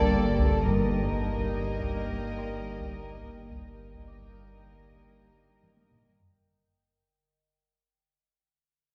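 A taiko ensemble struck with heavy sticks enters at 0.4 s beneath this tense, ominous suspense-film cue in 5/4 at 106 BPM, where a warm sul tasto cello section and a woody double bass section hold G in the bass over a detuned organ-like drone and a morphing wavetable pad with chorus and phaser. An intimate, dark violin section carries the melody above a floating second violin line and rich violas, and French horns and distant trombones sustain chords. A faint thumb-plucked Celtic harp rings, hard-mallet timpani sound briefly from 0.7 s, and a drum fill at 5.6 s closes the fading passage in a wet scoring-stage reverb.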